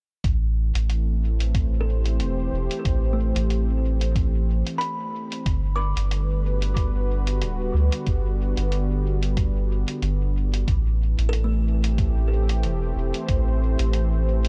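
A dry, close-sounding cut from a longer ambient dub piece, hazy and spacious with a light swing, where a deep, round analog bass sits up front beneath a thumpy, pitched-down electronic kick and a muffled, dub-echoed electronic hi-hat, while a detuned, warbling sawtooth pad with chorus holds sustained Am7 and Gmaj7 chords and a woody kalimba, low-pass filtered and sent through dub echo, plays arpeggios from 1.8 seconds.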